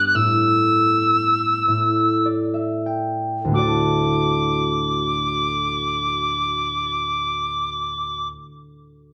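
A pure, soft-attacked wooden whistle with gentle vibrato carries the tender, pastoral melody of this brief Celtic slow air fragment in D major, moving freely in 6/8 at around 29-43 BPM and slowing through the opening 3.5 seconds, while a ringing, thumb-plucked concert harp accompanies up front alongside it, adding a fill from 1.7 to 3.5 seconds before settling on a D chord, all captured by close, detailed microphones in light reverb.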